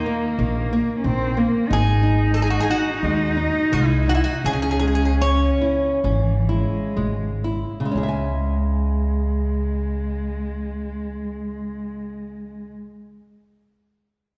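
This fado-style ballad in C# minor, cut from a longer piece, opens with a bright, metallic Greek bouzouki carrying the melody over a dark, bowed cello line and a small, fingerpicked nylon-string guitar, with an upright bass joining at 0.4 seconds. The feel is rubato and longing, with the pulse drifting between 59 and 92 BPM in 4/4 and slowing down from 1.7 to 8.0 seconds as the harmony moves from a D#5 chord through G# to C# minor. The bouzouki's picked double strings, some doubled at the octave, give the tune a passionate edge until it falls away at 6.9 seconds. After that the up-front cello, woody and smooth-topped with a single player's vibrato, and the warm guitar with its audible finger squeak, carry on over the pizzicato bass, whose gut strings sound thumpy and close. The players are heard from further back in a scoring stage, wrapped in a wet reverb with a 2.0-second decay.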